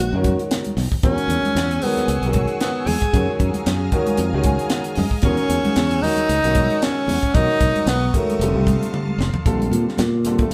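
A band playing together in one room, caught with a moderate studio reverb, gives this short cut of electric jazz fusion a funky, soaring mood and a light swing. Up front, a close-miked tenor saxophone with a warm jazz tone, vibrato and scooped notes carries the melody, then takes a solo at 9.5 seconds. A bright, direct fingered electric bass holds the low end, while a boxy grand piano accompanies on chords such as Bmaj9, E69 and F#maj13 and adds a fill at 4.2 seconds. The tight funk drum kit sounds dry, airy and polished, with a high-tuned snare, a punchy kick and a couple of fills, and thin-skinned congas sit in the background. A soft organ-like pad of pure, detuned sine tones, with a slow attack, ensemble chorus and its own reverb, enters at 1.0 seconds to hold sustained chords behind the band.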